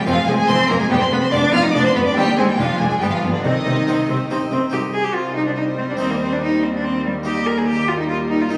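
A solo cello sits up front with a focused, vibrato-laden bowed tone, carrying the melody from its low register up to Bb4 in this dramatic, stormy classical piece: a baroque-style concerto movement in C minor at 142 BPM in a straight 3/4. A chamber violin section also carries the melody high above, while a second violin section plays a smooth, even second line in the background. From 0.1 s, a viola section adds accompaniment, and a double bass section with a clear, bowed sound joins a cello section to anchor the bass. A brilliant, dry, close-miked Flemish-style harpsichord with octave strings plucks the accompaniment in the background. The harmony moves through tense diminished and dominant chords before settling on C minor, and a second section begins at 4.7 s and ends on Eb. The sound is rich with moderate concert hall reverb, yet it has the compressed, roomy character of a phone recording with club reverb, and the passage is cut from a longer piece.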